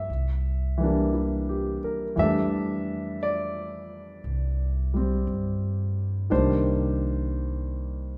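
A baby grand piano and a woody, dark upright bass, played pizzicato on steel strings, open this tender, late-night jazz ballad together, both up front and sounding from the first moment to the last at 8.2 seconds. At a slow 58 BPM in 4/4 with a gentle swing, the natural, short-sustained piano voices chords in F major, moving from C7 to Fmaj13 at 2.2 seconds and Cm9 at 6.3 seconds, while the bass holds the low end. A wet recital-hall reverb gives the pair the spacious air of a church or concert hall, tuned slightly low to A4 = 438 Hz, in a brief passage cut from a longer piece.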